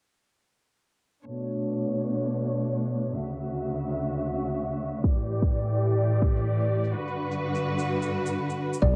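Murky and softened like a home cassette recording, this future garage fragment sits in a moderate spring reverb that lends it a ghostly, nocturnal air. A rich string ensemble holds bowed, vibrato-laced chords from 1.3 seconds, moving through Bm9, Dmaj9, A7sus4 and Gmaj7 while sidechain pumping makes the sustained harmony breathe against the swung 4/4 pulse. An overdriven electronic shaker ticks far in the background, and a filter sweep runs across the passage, with a break arriving at 6.9 seconds. A deep, layered kick drum arrives up front at 5.0 seconds, gritty with overdrive and tape colour. In the last moments at 8.8 seconds, a dark, detuned sawtooth bass rumbles in with tube saturation and pumping, and a dry, woody marimba struck with medium mallets sounds a single rustic note.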